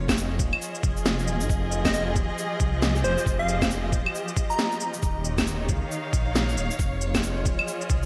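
A punchy, catchy unison lead drifts through this future garage excerpt, its detuned square and sine layers carrying a digital delay as it sings between C5 and Bb5 from 1.8 to 4.9 seconds. The mood is ghostly and wistful, set at 136 BPM in F minor with a 16th-note swing and a progression moving through Dbadd9, Fm7 and Eb7. Beneath it, a dark, bowed studio string section holds sustained chords with expressive portamento, while a menacing, saturated sawtooth bass evolves through a filter swell; both parts pump against the sidechain. A compressed, pitched-down kick lands with a muffled thump, and an up-front, woody electronic snare with shaker, claves and cabasa sits in gated reverb. A lush hall ambience and vinyl crackle frame the bright 1980s-style digital production.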